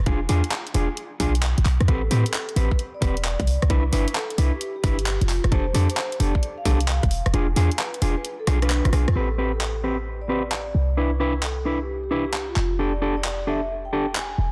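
A punchy, tight 808-style bass with tube saturation sits up front in this bouncy, moody two-step UK garage cut in A minor at 132 BPM, its swung 16ths set against overdriven electronic kick and a layered garage kit of handclaps, hi-hat and rim click in light studio ambience. A clean, dark electric guitar plays up-front stabs through a low-pass filter and dub echo, while a ringing vibraphone with soft mallets enters at 1.9 seconds with a smooth melody carried on digital delay over jazzy Am9, Cmaj7, F69 and E7b9 chords. The kick stops at 7.1 seconds, a drum fill and band accent lead into a second section at 9.2 seconds, and the whole passage has a dense, heavily limited modern master.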